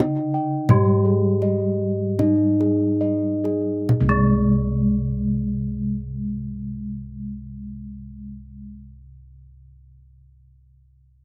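Slow and straight in 4/4 at roughly 33-45 BPM, easing down over the first 3.9 seconds, this shimmering, hypnotic Javanese gamelan excerpt pairs a mellow, padded-mallet bronze metallophone melody with a darker horn-mallet metallophone accompaniment whose paired tuning gives beating shimmer, while round bossed gongs ring arpeggios with a slapback echo, further bossed gongs enter at 0.7 seconds on a beating bass line, and a tight, up-front kendang drives the percussion until 4.8 seconds, all captured dry outdoors with little reverb.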